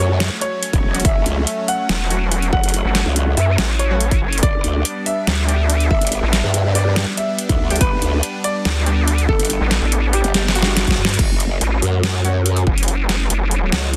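Dense and heavily limited, the mix sits in a digital ambience, giving this menacing, heavy wobble dubstep cut from a longer piece a crushing half-time weight. A clear, worn grand piano with long sustain carries the melody through a digital delay until about 11.1 seconds, while a lush supersaw pad holds sustained chords in the background, treated with a phaser, a low-pass filter and sidechain pumping. The low end is driven by an aggressive, growling bass with distortion, chorus and overdrive, joined at 1.9 seconds by a nasal, resonant vowel-sweep wobble bass placed up front. An overdriven dubstep kit supplies a deep snare, metallic hats and crash cymbal over a punchy electronic kick, with a drum fill at 10.3 seconds before the drop begins again. Bold orchestra-hit-like synth stabs, bright with ring modulation and a filter sweep, cut through from the background as the harmony moves between F# minor and G.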